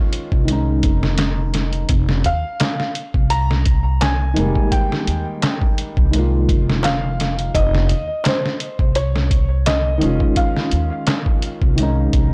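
Brooding and cinematic, this 85 BPM trip hop excerpt pairs a felt-muted upright piano melody and its tremolo-shimmered, tape-echoed accompaniment over Dbadd9 and Fm11 with a compressed, pitched-down sampler drum kit thumping up front, a woody pizzicato upright bass thickened by tube saturation, and a crisp metal-shell darbuka joining in the background at 2.6 seconds, all inside a blown-out, overdriven small-room sound.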